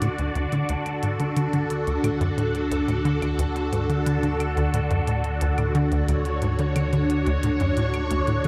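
Ambient, sequencer-driven space music at 89 BPM in D major, luminous and cosmic, where a bright, swirling string machine holds sustained chords through ensemble chorus and phaser over a punchy, saturated sequencer bass riff with tape echo, a round sine sub bass, and clicky electronic hi-hat and claves, all set in a vast, echoing space across this 8.5-second cut from a longer piece.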